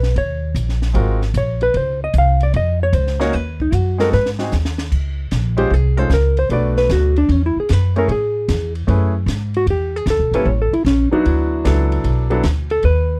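Small-group swing-and-bop jazz at 151 BPM with a playful, swinging feel, cut from a longer piece, where a dark, clean hollow-body electric guitar carries the fingered melody up front over a woody, thumpy pizzicato upright bass, a polished grand piano entering at 0.9 seconds with present comping through chords such as Dbmaj9, Ab7 and later Amaj9, and a compact cocktail kit with dark cymbals, a high-tuned snare and a punchy kick that plays a fill from 4.1 to 4.9 seconds, all captured in a dry, close 1970s-style studio sound.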